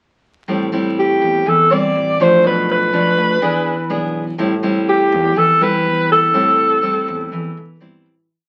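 A breathy alto saxophone leads this short, intimate bossa nova in A minor at 123 BPM, playing a mellow, motif-based jazz melody with vibrato and scooped notes that sounds distant and roomy yet sits up front, entering at 1.0 s. Beneath it, a bright, full-bodied nylon-string guitar is fingerpicked in the bossa nova manner, with thumb bass and syncopated plucked chords moving through Am7, Bm7b5 and E7, while a woody, thumpy upright bass plays dotted root-and-fifth lines with pizzicato gut strings in the background. The smooth piece is bathed in wet studio reverb and the crackle of a very old 78 rpm record, and it fades out from 6.3 s to 8.3 s.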